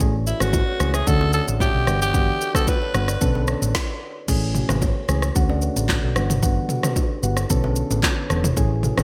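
A raspy, gritty alto saxophone with vibrato and scooped notes sits up front from 0.3 to 3.5 seconds, its pop-style phrases trailed by digital delay, before the whole groove drops out for a brief stop at 3.7 seconds in this romantic, joyful afrobeats excerpt. Beneath it, soft, warbling electric-piano-like synth keys with chorus glide through lush major-seventh and minor-ninth chords, while a woody kalimba rings in the background through its own delay. A round, punchy hollow-body bass and an electronic deep house kit with a deep kick, handclaps, shaker and gated reverb drive the straight feel, with very quiet congas and bongos adding live-room colour under the moderate plate reverb of a bright 1980s-style digital mix.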